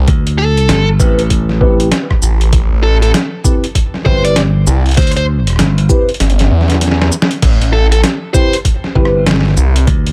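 A thick, swirling detuned saw bass sits up front in this playful, funky glitch hop excerpt, its sustained tone saturated and overdriven under a phaser, while a bright, growly slap bass doubles the low end with punchy attack. The sampler-style kit of snare, hi-hat, rim click, shaker and crash sounds pitched down, compressed and gritty with a tape-warm character, paired with a thumpy electronic kick, all riding a swung sixteenth-note feel in 4/4. A dark, distorted, picked electric lead guitar plays bluesy lines through dub echo, and a mellow tine electric piano adds clean stabs treated with phaser, sidechain pumping and dub echo, voiced as if through built-in speakers. The harmony opens on an Am9 chord. At 6.2 seconds the kick drops out for a drum fill, returning at 7.4 seconds, and the dry mix keeps every part close and direct.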